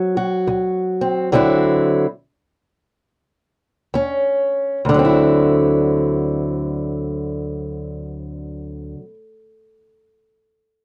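Blues in D mixolydian, soulful and laid-back, moving at a slow 65-72 BPM in 4/4 with a gentle swing on the eighth notes. A single fingerpicked old ladder-braced acoustic guitar carries the whole excerpt as a solo voice, sitting up front with a dark, boxy tone that ranges from D2 up to F#4. Over the first 4.8 seconds the tempo slows down as the harmony moves from D7 to D9 and then to C#sus2/D#. A second section begins at 4.8 seconds, returning to D9. The guitar sounds slightly flat of standard pitch, and the booth ambience is moderate, lending the production a dark, warm feel. This short excerpt is cut from a longer piece.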